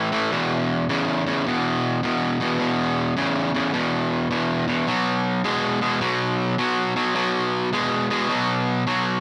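A swung eighth-note feel drives this soulful, swaggering blues excerpt, where a bright, overdriven semi-hollow electric guitar plays alone and up front in a low register, picked through power chords on E5 at 0.3 seconds and B5 at 4.9 seconds, set in a moderate echo-chamber reverb.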